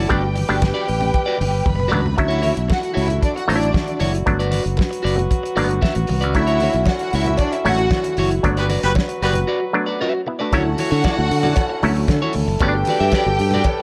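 A celebratory, joyful disco groove in D major at 115 BPM, this excerpt moves in a straight 4/4 over a cycle of Gmaj7 and Dmaj9 chords. A warm soul drum kit with a fat snare and tight kick drives it, with a drum fill at 1.7 seconds. It sits alongside an up-front, growly fingered electric bass and low-tuned congas that stay very quiet. A nasal auto-wah clav and a twangy electric guitar at the edge of break-up fill out the accompaniment. Around them, a lush, woody string section carries a second line while a stopped, metallic French horn section holds sustained chords. A cowbell joins in the background at 6.3 seconds, and a punchy horn section fires stabs from 8.6 seconds during a band accent that leads into a short break before the final section, all set in light reverb and small room ambience.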